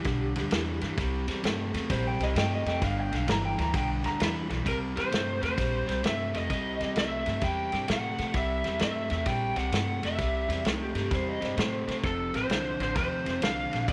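A lead guitar through a small cranked amp carries the melody from 4.7 seconds, its overdriven, lo-fi tone sitting up front in this rollicking, swaggering electric blues shuffle at 130 BPM in C mixolydian, cut from a longer piece. Before it arrives, an electric guitar through a small old amp takes a clean solo over the opening 4.7 seconds, its slightly broken-up, compressed sound shimmering with tremolo, and it returns briefly as a second line at 10.7 seconds. Underneath, a bright, overdriven and compressed electric guitar drives a low riff throughout, alongside the woody pizzicato of an upright bass. A dry, mid-forward soul drum kit with a tight kick, medium-tuned snare and ride cymbal keeps the swung eighths rolling, its top end rolled off. The harmony moves from G to C7 and back, settling on C when the melody enters and shifting to F7 at 12.0 seconds, all set in a moderate plate reverb with studio ambience.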